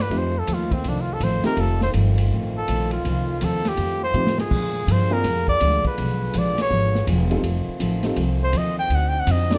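Dark, lightly reverberant production frames this joyful, energetic big band swing excerpt at 164 BPM in F mixolydian: a breathy trumpet solos up front with vibrato over a woody pizzicato upright bass, soft cup-muted trombone chords, a full-bodied picked acoustic guitar in the background, a mellow baby grand piano with audible action noise that drops out at 1.9 seconds and returns at 4.1 seconds, and an airy, polished drum kit with a punchy kick that plays a fill at 4.1 seconds, all moving through F7, Bb7, Bdim7 and D7b9.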